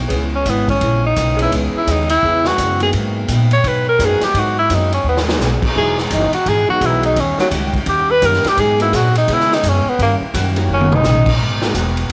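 A swung 4/4 big-band groove drives this dramatic, brassy jazz excerpt: a woody, thumpy pizzicato upright bass and a distant, roomy drum kit with a punchy kick and fills at 5.1 and 10.7 seconds carry an up-front vintage tenor saxophone solo with light vibrato. Meanwhile, a mellow saxophone section holds sustained chords, and a full-bodied picked acoustic guitar and an open grand piano, entering at 1.4 seconds, sit in the background of a small-room home cassette recording.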